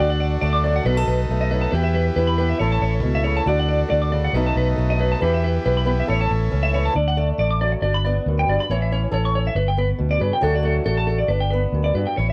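Highlife in D major at 138 BPM, this short cut from a longer piece has a warm, carefree mood and a light swing on the sixteenths. A round, dark fingered electric bass sits up front, carrying the low end throughout. A bright, twangy clean electric guitar plays compressed, picked arpeggios high in its range, dressed in lush chorus and slapback echo. Beneath it, a boxy fingerpicked acoustic guitar with fresh strings supplies swing-style accompaniment, while a buzzy vintage combo organ holds soft sustained chords with spring reverb until it stops at 6.9 seconds. There the music moves from a cycling D, B7, Em, A progression to a passage built on D, G and A, all captured in a dry, close 1970s-style studio sound.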